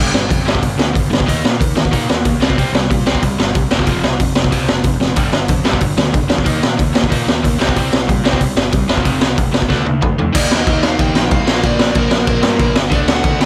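A raw garage drum kit sits up front in this urgent punk rock passage cut from a longer piece, its high-tuned snare, boomy kick and gritty, saturated small-room sound driving a straight 4/4 pulse with crash, hi-hat and toms. Behind it, a double-tracked overdriven electric guitar picks a riff over a cycle of G5, Eb5, C5 and F5 power chords. A fuzz picked electric bass with a growly, bright edge holds down the low end. Drum fills land at 5.0 seconds and again at 9.7 seconds as the harmony turns to Dm, pushing into a new section that moves through Eb, Bb and D. At 10.4 seconds a smooth overdriven lead guitar enters in the background with a melody touched by delay. The mix stays dry and close, keeping the whole thing raw and immediate.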